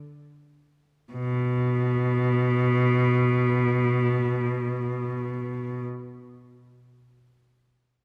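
A brief slowing passage opens this short excerpt from a longer classical piece, and at 1.1 seconds an unaccompanied cello enters in free time, bowed by a single player around B2. The tone is clear, smooth and even, with vibrato, and sits up front in a moderate concert hall reverb. Until the cello stops at 5.8 seconds, the dark production gives the moment a lonely, meditative mood.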